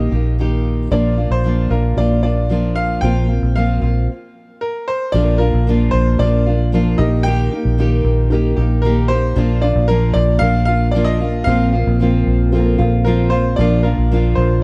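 A round, foam-muted electric bass sits up front in this sunny, heartfelt acoustic pop excerpt, joined by a fingerpicked nylon-string guitar with a deep classical tone, a brilliant, woody upright piano carrying the melody and a very quiet, boxy felt-muted upright piano beneath, all in light reverb as the harmony moves between Eb over Bb, Bb and Fsus4 over Bb, with a brief stop from 4.1 to 5.1 seconds.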